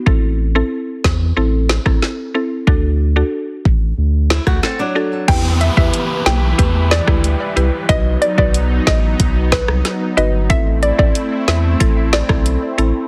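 An up-front, tape-warm electronic afro-pop drum kit with a deep kick, woody snare and warm hats drives this sultry, bouncy dancehall excerpt in E minor at 92 BPM, over a thick, saturated sub bass and a round, chorused mallet-like FM pluck. A fingerpicked flamenco guitar adds brief delayed arpeggios at 4.3 seconds before a hollow, detuned square-wave pluck takes the melody at 5.3 seconds. An electronic downlifter enters at 5.4 seconds, and a lush, airy unison pad with phaser and sidechain pumping joins at 5.7 seconds, all heard through a heavily compressed radio-like sound.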